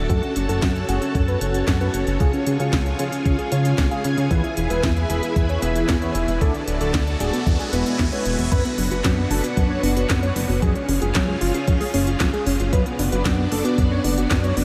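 Lush, vintage string machine chords, glossy chorused polysynth stabs and a dark, up-front synth bass open this bittersweet, danceable italo disco passage, cut from a longer piece. A thick, detuned unison lead carries the melody through an analog delay, while a thumpy electronic kick and a layered house kit with cracking snare, crisp hi-hats, handclaps and crash cymbal drive a straight feel. The polysynth, roughened by 12-bit sampler grit and trailed by diffuse ambient delay, moves through a filter sweep before stopping at 8.4 seconds, as a faint riser that began at 6.1 seconds builds beneath it. From 8.5 seconds a soft, round, warbling pluck enters with gentle arpeggios, colored by chorus and cassette tape wear and set in the background over chords that hold on an F# bass. A huge ambient reverb soaks the mix, giving the whole passage a dreamy glow.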